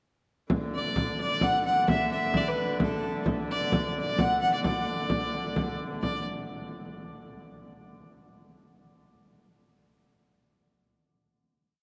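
A bowed fiddle carries a modal melody with ornaments and light vibrato, its smooth, even tone set up front yet with a distant quality and a slapback echo, ranging from A4 to F#5. Beneath it a nasal, earthy hurdy-gurdy holds a D3 drone with an airy bow, while a deep, dry frame drum keeps an evenly spread pattern close at hand. The hurdy-gurdy and drum enter around 0.5 seconds, and the fiddle joins at about 0.7 seconds. This festive, ancient-sounding medieval dance in D major moves at 130 BPM in 3/4, bathed in a wet cathedral reverb within a dark, warm production, and closes on a final note held from 6.0 to 7.4 seconds.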